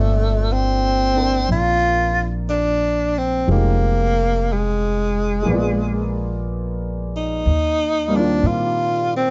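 A close-miked tenor saxophone carries the melody from the first moment, clear and up front with soft attacks, scooped notes and vibrato, over a slightly detuned, vintage upright piano and a woody, thumpy pizzicato upright bass. This intimate, smoky jazz ballad in G minor moves at 60 BPM in 4/4 with a swung feel, passing through Gm11, Fm7, Bb7b9 and Eb69 across its 9.3 seconds, cut from a longer piece. Light reverb and a dark production round off the sound.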